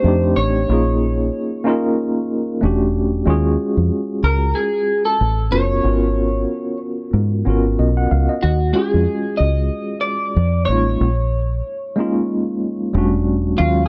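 R&B at 93 BPM in 4/4, this soulful, introspective passage in Eb minor has a gentle 16th-note swing and a slightly flat tuning, cut from a longer piece. An electric guitar through a small old amp carries the melody between F4 and Eb5, its picked tone slightly broken-up and compressed, shimmering with analog chorus. Beneath it, a mellow tine electric piano supplies the accompaniment, sounding worn and slightly out of tune through a combo amp, with a medium tremolo pulsing across its chords. A deep dub fingered electric bass sits lowest and loudest, dark, round and punchy with a foam-muted attack, reaching down to E1. The harmony drifts through minor-eleventh colours, moving from F7 and Bbm7 to Ebm11 and Abm11 before circling back to F7 at 10.4 seconds. All three parts play throughout the 13.9 seconds, captured in a dry, close 1970s-style studio sound with light reverb.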